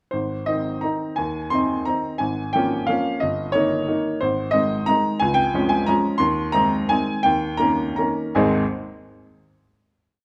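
A clear, woody upright piano opens at once with a sparkling, graceful waltz in Ab major, its single-line melody set over a waltz bass in 3/4, with a rubato feel moving between 154 and 190 BPM and tuned to A4 = 443 Hz. The short-sustained, vintage tone sits up front, captured by close, detailed microphones within a moderate recital hall reverb. This brief complete piece moves through its progression back to its home key, with the final Ab chord arriving at 8.4 seconds.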